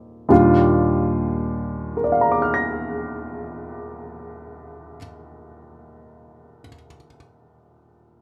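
A slow swing feel in four sets the pace of this brief jazz fragment, cut from a longer piece, and its mood is intimate and romantic. A grand piano carries the accompaniment alone from 0.0 to 8.2 seconds, reaching from deep bass notes up into its high register. Its tone is warm and natural, placed up front, with the mechanical noise of the action audible beneath the notes. The harmony rests on a single lush major-seventh chord, sounding from 0.3 seconds. A light reverb gives the recording a gentle sense of space while keeping the close, private character of the playing.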